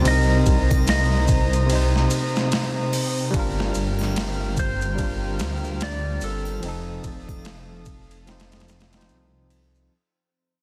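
A twangy lap steel melody with dub echo opens this melancholic, hypnotic trip hop excerpt at 73 BPM over a tremolo-rippled, bell-like electric piano with 12-bit sampler grit, floating sul tasto violins and a breathy wind-like noise layer, joined at 0.1 seconds by a rumbling detuned saw bass, an overdriven, pitched-down boom bap kit with thumpy kick and high-tuned snare, and background maracas and triangle, all moving through Cm7, Gm7 and F7 in a dense, vinyl-crackled mix that fades out from 1.1 seconds.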